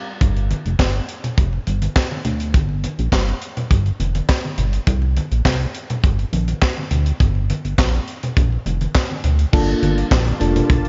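Light reverb and small-room air give this funky early-eighties boogie-funk fragment a rolled-off, late-night sound, opening on a band accent and a brief flash of thick, detuned unison pad before the groove starts at 0.2 seconds. A glossy, chorused synth bass with a filter pluck sits up front beside a tight acoustic drum kit with a high-tuned snare, handclaps, hi-hat, kick and crash, while hard-handed, bright congas sit in the background over chords moving from G7(no3) to Csus2 and Gm7. At 9.5 seconds the pad returns and a dreamy, mellow FM electric piano, layered with a soft pad and coloured by tremolo and slapback echo, enters on a Gm9.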